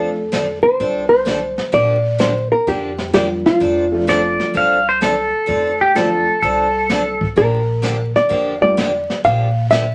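A dark, clean hollow-body jazz guitar carries the melody up front, its fingered, compressed lines sitting high in the mix before it steps aside at 4.0 seconds. A twangy pedal steel guitar then enters as the second line, played with fingerpicks and slide and shaped by volume swells, until the jazz guitar returns at 7.4 seconds. Underneath, a bright, boxy parlour acoustic guitar picks accompaniment throughout, joined by a mellow, woody upright piano for much of the middle stretch. A thumpy gut-string upright bass plucks the low end, while a smooth brush drum kit with a high-tuned snare and boomy kick keeps a swung 4/4 pulse at 128 BPM. This down-home western swing passage in F major, cut from a longer piece, moves between F6 and Bb6 chords and sits in a short, wet studio ambience dusted with vinyl crackle.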